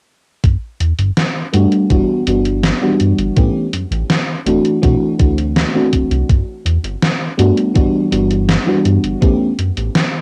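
A lush, dreamy FM electric piano with a soft pad layer drifts in at 1.5 s with subtle chorus and tape echo, over a thumpy, tape-warm electronic kick, a gated 80s digital drum machine's gritty hi-hat and gated-reverb snare, and a glossy, dark chorused synth bass, shaping a melancholic, nostalgic 82 BPM vaporwave passage cut from a longer piece that cycles through Gmaj9, Em7/G, A7 and D7.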